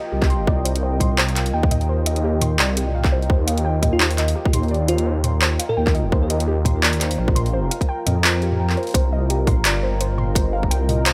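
Tense and cinematic, this half-time drum and bass excerpt sits in C minor at 170 BPM, its sixteenths carrying a light swing. A dark analog pad holds sustained chords with slow-attack, chorused swells pumped by sidechain, while a warbly, dusty pluck spins lo-fi arpeggios through chorus and dub echo. Underneath, a detuned saw bass rumbles and beats deep and up front, and an overdriven electronic kick joins a layered kit of handclaps, bright hi-hats and toms, all in a small room ambience. Between 3.9 and 5.9 seconds a bell-like FM electric piano slips in from the background with a brief, mellow melody roughened by 12-bit sampler grit and delay. The harmony moves from Cm to Eb and back, and the kick drops out from 8.2 to 8.9 seconds before the section repeats.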